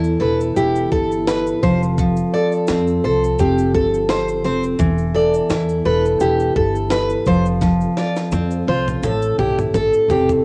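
Reflective and wistful, this acoustic pop excerpt sets an up-front, full-bodied picked steel-string acoustic guitar and a second guitar playing arpeggios from 0.2 seconds over a woody pizzicato upright bass, a soft flute-like tonewheel organ through a fast rotary speaker in the background, and a gritty, pitched-up sampler-style breakbeat kit with a thumpy kick and high-tuned snare that plays a drum fill from 7.6 seconds, as chords move from Esus4 to F and land on Am, with cassette tape coloring the guitars, organ and drums in a small, lightly reverberant room.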